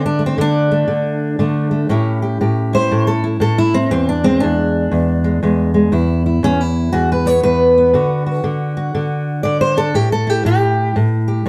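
Acoustic country blues with a rollicking, gritty mood, moving at 119 BPM in 4/4 with a swung eighth-note feel in A mixolydian. A fingerpicked steel-string acoustic guitar carries the whole 11.5-second cut from a longer piece alone, its auditorium-sized body sitting up front as it runs through D5, A7, E7, D and A7(no3) across a span from E2 to D5. The live room sound adds a moderate studio reverb around the guitar.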